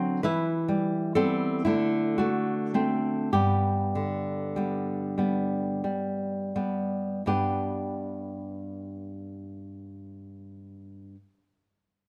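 A tender, sunny romantic piece for solo nylon-string guitar in G major and 6/8, the classical fingerpicked guitar sounds warm and up front through close, detailed microphones with light reverb, moving freely in rubato at a slow 27-46 BPM, easing down over the first 7.2 seconds as the harmony passes from E minor through D7 to G before a new section begins, in a short cut from a longer piece.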